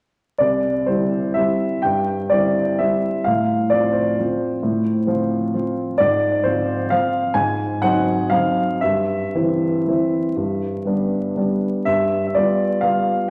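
A woody upright piano opens at 0.4 s, playing a sparkling, playful classical waltz alone in 3/4 in C major, with a rubato feel that drifts between 113 and 139 BPM. Its natural tone sits up front with long sustain, ranging from C2 to Ab5 as the harmony moves from C through F/A and a darker Fm/Ab and Ab7 before settling on C/G, G and G7. A recital hall reverb and a vinyl crackle surround the playing until the fragment, cut from a longer piece, ends at 13.3 s.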